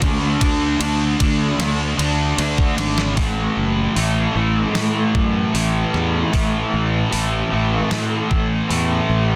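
A double-tracked fuzz guitar riff with subtle chorus sits up front from the first moment, over a punchy, bright, overdriven fingered bass and a thumpy, tape-warm detuned 8-bit drum machine with kick, snare, hi-hat and ride, forming a blissful, hazy shoegaze and dream pop rock excerpt at 76 BPM in 4/4, where a drum fill at 2.8 seconds leads into a new section at 3.2 seconds in a dry, dense, heavily limited mix.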